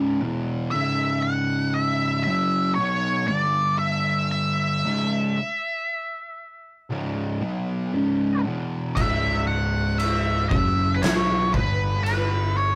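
Ominous and brooding, this slow stoner and doom metal excerpt opens with a dark octave-fuzz lead guitar colored by wah and a double-tracked, up-front fuzz guitar grinding out a low riff over C#m and G5 chords, until a growly, overdriven picked electric bass and an oversized low-tuned drum kit with a fat snare, punchy kick and crash cymbal, echoing in a bright stone room, join at 9.0 seconds, all captured in a rough rehearsal-room recording with light reverb.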